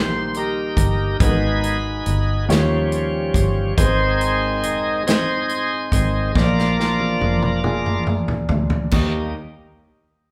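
A bright, shouting tonewheel organ leads this slow, jubilant gospel excerpt in Eb major, its full, lightly overdriven sustained chords spinning through a fast rotary speaker and carrying a solo up front from the start until 8.9 seconds. Beneath it, a woody upright piano with a vintage, long-sustaining tone supplies accompaniment, while a fingered electric bass adds a dark, round, foam-muted low end. The natural country drum kit enters at 0.3 seconds with a punchy kick, medium-tuned snare, hi-hat, toms and crash cymbal sitting forward in the mix, and it plays a fill from 6.4 to 8.9 seconds. At 46 dotted-quarter beats per minute in a straight 6/8, the harmony moves from Eb through Abm, Eb9 and Ab to Bb before resolving back to Eb. The band plays live together in one room, wrapped in a wet, large studio reverb that lends the uplifting performance a generous, spacious glow.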